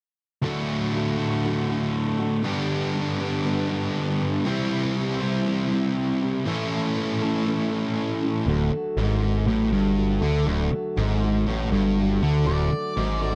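A sludgy, overdriven guitar sits up front beside a bright distorted electric guitar, both driving a confident, swaggering rock riff in D mixolydian at 120 BPM over a D, G, C, A progression, while a picked steel-string acoustic guitar with audible finger squeak plays in the background from 0.4 seconds. At 8.5 seconds a growling, overdriven picked bass enters up front, and at 12.5 seconds a dark octave-fuzz lead guitar adds a brief high second line. The sound is dry and close, in the manner of a 1970s studio recording with light reverb, and the piece is cut from a longer work.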